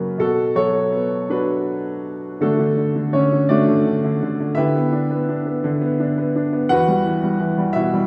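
A wet recital-hall reverb with a 1.5-second decay surrounds this short classical passage, cut from a longer piece and recorded in a church or concert hall. The only instrument is a baby grand piano, heard solo from start to finish, with a boxy, up-front tone that carries a touch of warmth. Set in D major and 6/8 at about 55 BPM in dotted quarters, the playing moves with rubato and uneven beats, giving it a lyrical, unhurried feel. It opens on B minor before settling onto D at 2.4 seconds, then moves through G over D and on to E minor at 6.7 seconds, all within a range from E2 to F#5. The mood is dark and wistful.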